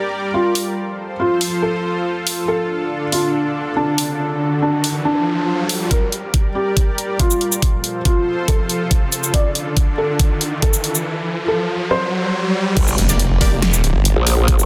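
A dense, heavily limited modern mix with light reverb opens this chaotic, aggressive heavy wobble dubstep excerpt in G minor at 140 BPM, half-time, where a soft, felt-muted upright piano plays a mellow melody through dub echo over a lush supersaw pad pumping with sidechain. Overdriven, up-front drums with a huge snare and bright hats enter and are soon joined by a rising sound effect, and a knocking electronic kick joins at 5.9 seconds, driving a build-up that includes a drum fill at 9.3 seconds. At the drop at 12.8 seconds an impact hits as a wobbling growl bass with chorus enters, followed by a snarling, detuned distorted saw bass, while a punchy orchestra-hit-like synth stab with phaser and dub echo sits in the background.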